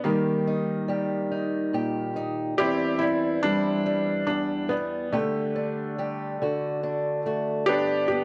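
A felt-muted upright piano carries the melody up front with a soft, mellow tone and audible action noise, over a dark fingerpicked acoustic archtop guitar in this hopeful, intimate folk-pop ballad fragment at 47 BPM in 6/8, tuned to A4 = 441 Hz and set in light reverb, as a very quiet, slightly broken-up lo-fi electric guitar through a small old amp slips in with a few picked arpeggio notes at 7.7 s.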